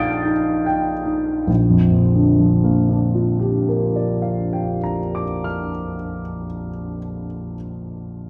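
A dark production places a clear concert grand piano up front, its deep bass ringing into the generous reverb of a recital hall. This serene, hazy impressionist piece in 6/8 unfolds with free rubato, easing and slowing over the first 1.5 seconds on an Ebmaj7#11/Bb chord before settling onto Bb6. Cut from a longer work, the excerpt lasts just over 8 seconds, with the solo piano spanning Bb1 to D7.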